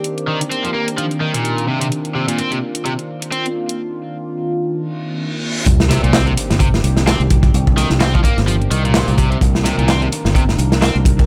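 This energetic, playful breakbeat excerpt opens on a swirling, evolving sawtooth pad of slow-attack sustained chords, colored by phaser and chorus and pumping against a sidechain, over a layered electronic house kit of handclaps and bright hats. At 0.3 s an up-front, double-tracked guitar riff enters, its picked, overdriven tone sent through a low-pass filter and delay. The groove carries a swung sixteenth-note feel, and a break follows, with a reverse cymbal and sub drop arriving at 5.1 s. At 5.7 s the drop lands with a round, punchy fingered bass, dark and up front, and a crunchy acoustic breakbeat kit, gritty and saturated with a tight kick, a medium-tuned snare and a rolled-off top. A small room ambience surrounds the whole mix.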